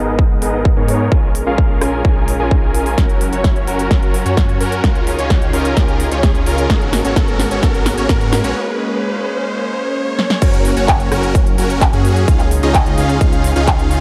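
Huge, airy supersaw chords carry the riff in this anthemic, euphoric festival progressive house excerpt at 129 BPM in F# major, opening a build-up under a low-pass filter sweep with digital delay, while a background riser climbs alongside from 0.4 seconds. A punchy, overdriven electronic kick sits up front, and a big-room kit adds a punchy snare, crisp hi-hat, handclaps, rim click and crash cymbal, with a drum fill before a break at 8.6 seconds. Beneath, a dark, thick detuned saw bass and a slow-attack pad of sustained chorused chords pump with sidechain through a G#madd9, A#m7, F#, C#add9 progression that drops at 10.4 seconds in light digital ambience.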